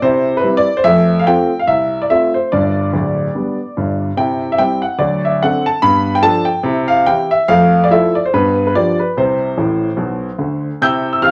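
A solo grand piano opens this brief stride jazz excerpt on a C major chord, setting a playful, exuberant mood at 145 BPM in 4/4 with a light swing on the eighth notes. The piano has a smooth, vintage tone and sits up front, covering a broad span from D1 up to G6. The harmony moves through F and G back to C, then through D7 and G9 before returning to C again, then passes through Fmaj7, G7 and Amadd9. A piano fill arrives at 9.6 s and carries the phrase back to C at 10.8 s. A moderate club reverb gives the instrument a sense of a small, lively room.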